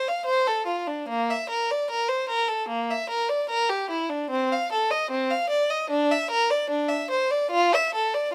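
Closely and intimately recorded with light reverb and fine detail, this short cut from a longer classical, baroque-style suite movement presents a lone bowed violin, smooth, even and set up front with vibrato, playing freely in a flowing, radiant rubato across a range from Bb3 to F5 for its full 8.3 seconds.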